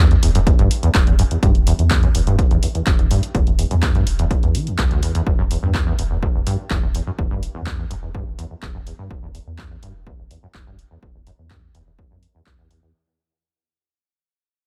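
Gritty and trippy, this short acid house cut runs in a straight 4/4 groove, built around a squelchy, resonant sawtooth acid bass riff up front, thickened by tube saturation and a lush chorus. Beneath it, a deep, round sine sub bass sits in the background with sidechain pumping, while a dry, punchy electronic kick drives the beat and an analog drum machine adds handclaps and hi-hat. The mix is dry with little reverb, and a fade-out spans the whole 12.9 seconds.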